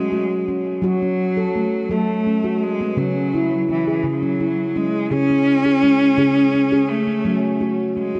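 Gentle and hypnotic, this brief meditative world fragment moves at 56 BPM in a straight 6/8 in C# minor, with a single bowed cello singing a smooth, clear melody with vibrato over ringing, mellow stainless-steel handpan arpeggios played with soft fingertips, both parts up front with delay and set in a dark, wet echo-chamber reverb with boxy small-room ambience, as the harmony moves from F#m to C#m and returns to F#m at 7.3 seconds.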